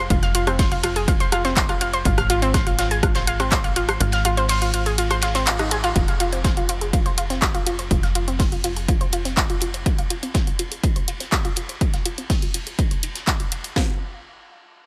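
Melodic techno at 123 BPM with a hypnotic, dramatic pull: a round, nasal analog pluck spins arpeggios through chorus, delay and sidechain pumping over a tight, punchy sequencer bass that drives until 9.8 seconds. The layered electronic drums bring a heavy kick, cracking snare, handclaps, hi-hat and rim click, while a lo-fi vintage kit adds a fat, muffled snare, hi-hat and ride beneath; the kick drops out from 4.0 to 6.0 seconds, with a band accent landing at 5.5. From 6.0 seconds a filter sweeps the arpeggio sound as the chords move from F minor through Ab6 and F5, all set in light reverb and small-room ambience in this cut from a longer piece.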